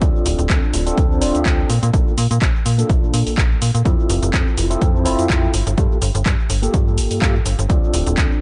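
Filtered disco house with a nostalgic, funky mood, cut from a longer piece and moving with a lightly swung sixteenth-note feel. An electronic kick drum, punchy and tape-warm, anchors the groove alongside an analog drum machine playing cabasa, handclaps and hi-hat, both re-recorded in a small room. A slap-like FM bass with a snappy, metallic attack and tube saturation sits under a low-pass filter and pumps against the kick. Above it, an overdriven tine electric piano comes through a combo amp with a gritty edge, fast tremolo, phaser, sidechain pumping, a low-pass filter and dub echo, moving through Dm7, Bbmaj7, Fmaj7 and Gm9 before returning to Dm7 at 7.7 seconds. The echo-heavy mix carries light reverb and a dulled top end, with every part playing throughout the roughly 8-second clip.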